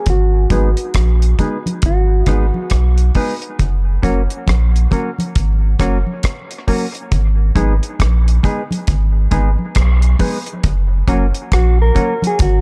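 Dub reggae in G# minor at 68 BPM with a swung 16th feel, tuned to A4 = 436 Hz, this spacious, deep fragment moves between G#m and F# over a dry acoustic drum kit with a tight kick and a round, soft sub bass, both up front. A dark, compressed, fingered electric guitar carries the melody through a low-pass filter and dub echo, dropping out at 3.1 seconds and returning at 11.5. A second, clean electric guitar accompanies alongside hollow, percussive, wave-folded organ stabs with chorus and echo, and damped, thick-skinned congas played with soft hands sit in the background, while a filter sweep runs through the first 10.6 seconds.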